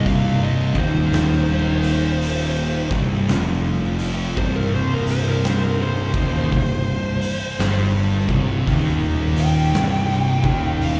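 A slow 56 BPM pulse in 4/4, swung on the eighths, drives this hypnotic, heavy stretch of stoner and doom metal in C minor, cut from a longer piece and resting on a single C minor chord. An oversized, low-tuned acoustic drum kit enters at 0.1 seconds with a boomy kick, a medium-tuned snare and hi-hat, its big, pumping room sound saturated and gritty. Up front, a growly, punchy fuzz bass is picked and overdriven, bright and direct from the amp, anchoring the bottom between C1 and G1. Two thick fuzz guitars sit in the background playing the riff between C2 and G3, one warm and the other dark, both distorted and picked. Over them a compressed, dark fuzz lead guitar takes a solo from 0.0 to 11.0 seconds, its melody moving between Bb4 and G5 through slapback echo and delay. The whole performance is heard as a live gig through the venue's PA, with small-room ambience and recital-hall reverb around it.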